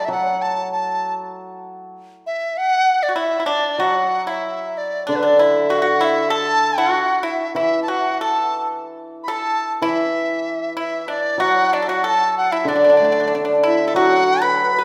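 A reedy large dizi leads this graceful, festive Chinese chamber piece, its bamboo tone carrying a buzzing membrane, a crisp attack and vibrato as it sings the melody up front. Beneath it, a hammered dulcimer supplies shimmering, ringing accompaniment in a lower register throughout the passage. At 3.1 seconds a pipa joins with a second line, played with fingerpicks in a dry, percussive voice that sits close to the listener. Near the close, at 13.6 seconds, a mellow xiao adds another second line, its end-blown sound airy and slightly unsteady, with rolled-off highs. The music moves in a rubato 2/4 feel, and the ensemble is heard in a resonant recital hall whose generous reverb gives the fragment, cut from a longer piece, a spacious glow.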